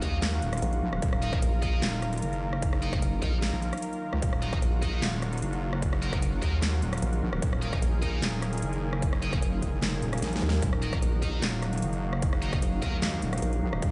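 Heavy wobble dubstep in Eb minor at 150 BPM with a half-time feel, this menacing, aggressive passage is cut from a longer piece and opens on an Ebmadd9 chord, running roughly 14 seconds. Two wobble basses carry the low end between Eb1 and Eb2 with chorus and overdrive, one a saturated square-and-sine tone sitting up front, the other entering at 0.6 s with a nasal formant-filtered vowel sweep. A distorted, layered electronic kick anchors the beat alongside a dubstep kit of huge snare, metallic hi-hats, handclaps and rim clicks, with a short drum fill at 10.2 s. Above them a thick, detuned sawtooth unison pad holds sustained chords with chorus and sidechain pumping, joined by a warbly, nostalgic lo-fi pad drifting in the background with its own built-in reverb. A bright, double-tracked high-gain guitar punches in picked stabs through distortion and delay until it stops at 12.9 s. The mix is dry overall, yet sounds as if played on a big sound system in a bare stone room, with the top end rolled off above 10.5 kHz.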